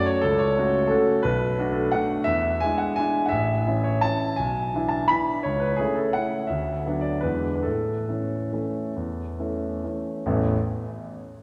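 A classical piano waltz in A major, this graceful, elegant passage moves in 3/4 with a rubato feel, its tempo flexing between 130 and 187 BPM. A concert grand piano plays solo from 0.0 to 10.6 seconds, spanning A1 to B5, its tone warm and open with a deep bass, long sustain and an up-front presence. The harmony begins on F#m and travels through Bm7 and E7 before settling on A, then passes through E7/B, A/C# and Bm/D to a closing E7 and A at 7.6 seconds. From 7.0 to 10.3 seconds the music slows down, easing toward the end of its opening section before a brief new section begins at 10.3 seconds. A wet church reverb with a long 3.5-second decay surrounds the piano, giving the sense of a church or concert hall, and the recording is cut from a longer piece.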